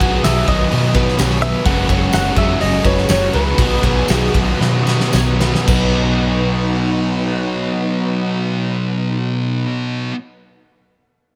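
A straight 4/4 pulse drives this wistful, dreamy passage of shoegaze and dream pop rock, cut from a longer piece, which slows between 1.7 and 5.7 seconds as the harmony moves from B to F#sus2 and back. A big rock drum kit, dark and smooth in a big room with a fat snare and punchy kick, plays a fill that leads into the second half, joined by a jingly, close and dry tambourine. Beneath, a foam-muted vintage fingered electric bass gives a round, amped low end, while three background guitars stack up riffs: a biting, double-tracked overdriven guitar with spring reverb, an overdriven semi-hollow guitar with reverse reverb, and a thick fuzz guitar with distortion and subtle chorus. A twangy, compressed clean electric guitar recorded direct carries the melody with slapback echo, and a boxy, shimmering, octave-doubled twelve-string acoustic picks arpeggios through analog chorus and slapback. A sawtooth string machine voiced as violas holds slow-attack chords with a moving notch, phaser and ensemble chorus, all set in light reverb and small room ambience.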